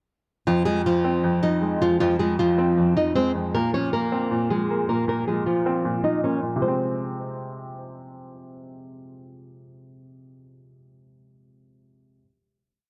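Hip hop with a melancholic yet hard-hitting mood at 156 BPM in a half-time feel in F minor, built on a boxy, fingerpicked flamenco guitar loop doubled in octaves with audible finger squeak, over a worn baby grand piano playing a short-sustain eighth-note arpeggio pattern, both repeated like a sampled loop and set up front in a moderate scoring-stage reverb under a low-pass filter, with a filter sweep through the breakdown until a final F minor chord lands at 6.6 seconds, after which the guitar drops out at 7.7 seconds and the piano rings on alone to 12.2 seconds.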